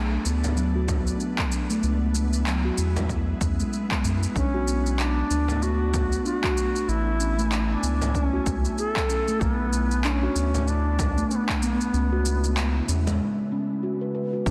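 A swung 95 BPM groove in 4/4 drives this meditative, earthy organic downtempo excerpt in B dorian, built on a punchy, overdriven electronic kick and layered, gritty shaker and handclaps that sit in a small room ambience. A round, dark analog bass holds the low end up front, while a deep frame drum rumbles distantly in the background until 13.2 s, when a break begins. A steel tongue drum played with soft rubber mallets rings out mellow, pure arpeggios through a delay, with a filter sweep running across the whole passage. An ethereal, detuned pad with chorus and pumping sidechain sustains chords such as Bm7, C#m7 and Amaj7 beneath it all. At 4.4 s a bright, reedy low wooden flute enters up front with tongued chiff and vibrato, its melody trailing delay over a moderate scoring stage reverb and a dense, heavily limited master.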